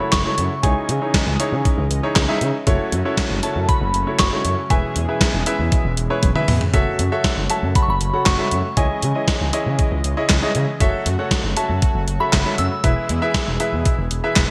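Bright 1980s-style digital production with light reverb carries this upbeat synth-pop passage at 118 BPM, where an up-front gated drum machine with a thumpy kick, handclaps, hi-hat and toms, plus a drum fill at 6.2 seconds, drives a smooth gliding synth bass, a clear baby grand piano accompaniment, a brassy detuned analog pad holding chords in the background, and a soft, pure FM bell melody with chorus, phaser and delay over chords moving between F#m7, C#madd9 and E.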